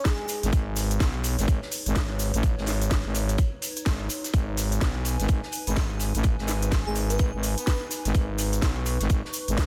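Bass house at 126 BPM in G# minor with a swung, gritty and bouncy feel, this short cut from a longer piece sets a tight, up-front electronic kick and a garage kit of cracking snare and crisp hats against a very quiet loose indie kit, a grainy shaker in the background, and a warbling, nostalgic pad with chorus, reverb and sidechain pumping, while a thick, growling FM bass with tube saturation and pumping enters at 0.4 seconds and an airy, dreamy lead with chorus, vibrato and dub echo returns at 5.7 seconds over a dense, heavily limited master.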